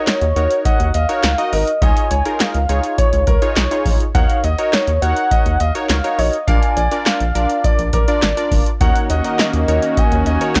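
Synth-pop at 103 BPM in Eb minor, this short cut from a longer piece feels driving yet melancholic, moving through Ebm7, Dbadd9 and Bb chords in a straight 4/4. A velvety synth lead with chorus and vibrato carries the melody, while a bright, polished concert grand piano with tape echo traces a second line alongside it. Warm, detuned analog keys with chorus and a filter sweep fill in the accompaniment, and a rubbery, hollow square bass with a resonant filter pluck bounces low and up front. The electro analog drum machine sits forward too, with a deep kick, punchy snare, metallic hi-hats and handclaps touched by a short room. At 8.8 seconds a brassy, warbling vintage pad with ring modulation and a filter swell enters on sustained chords, and the whole has a dry, gritty hardware character.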